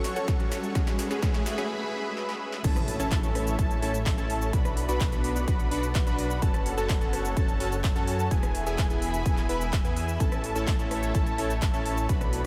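A punchy, tape-warm electronic kick sits up front from 0.3 seconds in this triumphant, uplifting festival progressive house excerpt at 127 BPM in A major, joined by a big-room dance kit with crisp hats, an overdriven snare, claps, shaker, rim clicks and crash, a thick detuned saw bass, and a punchy, sustained supersaw stab riff with analog delay. After a short build-up with drum fills, a background riser and a brief break, the drop lands at 2.6 seconds with an impact as a bold, nasal, warbling unison lead enters with arpeggios. Throughout, a lush, bright pad with chorus and phaser holds sustained chords in the background, its pumping sidechain shared with the bass, stab and lead, all bathed in a dreamy, reverb-soaked mix over a progression moving from F#m and E to A, Bm, F#m, E and back to A.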